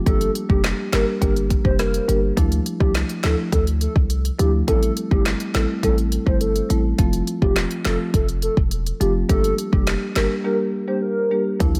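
Light reverb and digital ambience frame this bouncy, tough dancehall excerpt at 104 BPM, where a punchy, heavy 808-style bass and an up-front deep house drum kit, with its deep kick, woody snare, smooth hats, handclaps and rim clicks, drive a mellow, round soft-mallet marimba set in a boxy small room, while a hollow, warbling clarinet-like synth lead with chorus, analog delay and vibrato carries the melody over a Gm, Dmadd9, Am7, F progression.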